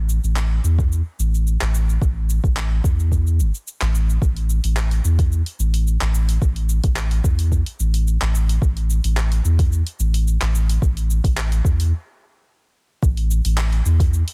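Organic downtempo in a straight 4/4, this short cut from a longer piece has a warm, meditative mood. A deep, round sine sub bass sits up front, its fast attack and sustained notes moving between G1 and E2 under a sidechain pumping effect. A soft electronic kick, re-recorded in a small room and placed up front, arrives at 0.8 seconds. A layered deep house kit adds handclaps, hi-hat and shaker at a lower level, with soft clipping on the snare. A stop from 11.9 to 13.0 seconds breaks the flow before a brief new section closes the passage, all set in digital ambience with a dense, heavily limited modern master.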